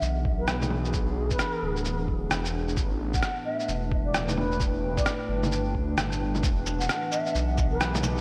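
Rainy and ghostly, this short future garage excerpt at 131 BPM with a 62% swing on the 16ths sets a distant, airy baroque flute melody in diffuse delay over a warbling, nostalgic tape-like pad with chorus and sidechain pumping, a menacing detuned saw bass that pumps and swells up front, muffled, pitched-down sampler-style shaker, rim click, bongos and cabasa, and a thumpy electronic kick that drops out from 6.0 to 6.4 s, all moving from E7 through A9sus4 to Em7 in a dreamy, reverb-soaked hall.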